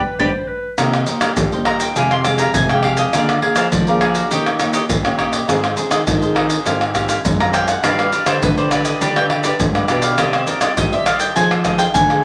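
Bittersweet yet lively, this short excerpt of samba and choro moves at 102 BPM in C minor. A clear, present clarinet sounds briefly in a band accent at the start before the bowl-back mandolin, picked with its doubled strings ringing, takes the melody as a solo from 0.8 seconds. A crisp, mellow cavaquinho, a fingerpicked nylon-string guitar, a second dark, thumb-plucked nylon-string guitar playing the bass line in the background and up-front percussion of deep surdo, maracas, pandeiro and tamborim carry it through chords such as Cm7, Fmadd9, Eb7 and G, all in a reverberant studio sound.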